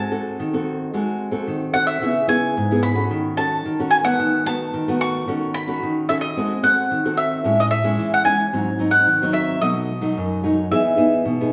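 Samba at 110 BPM in a straight 4/4, this short cut from a longer piece feels sunny and lively. A mandolin carries the melody high up, its picked double strings giving a mellow, round tone that sits up front. A fingerpicked nylon-string guitar provides the accompaniment in a classical style, its warm acoustic sound also up front, spanning from low bass notes into the middle register. The two play together throughout the 11.5 seconds, sounding like a duo performing live in one room with the generous reverb of a large studio. The harmony moves through rich, jazzy colors, opening on G#7b9 and passing through C#m7, D#m7b5 and Amaj7 before settling on Emaj7 at 10.7 seconds.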